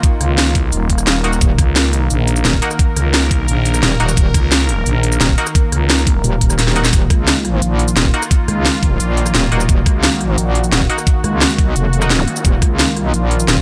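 A digital ambience surrounds this aggressive, dark, technical drum and bass cut from a longer piece, with an up-front, layered electronic kit of knocking kick, cracking snare, crisp hats, rim click and shaker driving two drops that are separated by a drum fill at 6.6 seconds. A thick, growling FM bass holds the low end until 6.2 seconds, while a saturated, metallic wobble bass with chorus and sidechain pumping joins it from 1.4 seconds. Above them an evolving, airy sawtooth pad sustains bright chords, a nasal, band-passed chord stab with delay sits in the background, and a brief electronic zap flickers at 12.2 seconds.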